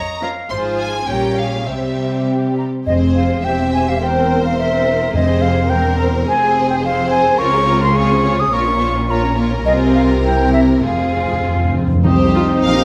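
A quick, restless classical-period orchestral movement in F minor at around 98-109 BPM in 2/4, pushed along with urgent rubato. Vibrato-rich string sections carry the music throughout: violins in the background hold the melody while a second violin line, violas, cellos and double basses fill the harmony and bass, and a pure, straight-toned flute sits up front with its own line from 2.3 seconds. A clear clarinet appears at the opening and close, close-miked calf-headed timpani with medium mallets enter at 2.9 seconds and return for a fill at 10.8 seconds, and at 12.0 seconds a mellow bassoon joins the accompaniment while a distant, roomy horn section adds sustained chords, all set in a wet stone-room reverb on this excerpt from a longer piece.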